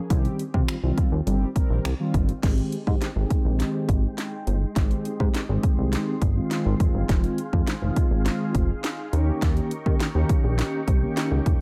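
Dance-pop at 103 BPM in Ab major, carefree and summery, where punchy overdriven house drums with cracking snare, bright hats, finger snaps and crash drive a glossy, detuned chorused synth bass and a round, brassy synth brass accompaniment with chorus, delay and sidechain pumping, joined at 2.4 seconds by soft vintage organ-like ensemble strings as a build-up, drum fill and filter sweep carry the Cm, Abmaj7, Fm7 and Eb7 changes through a dry but echo-heavy mix in this short cut from a longer piece.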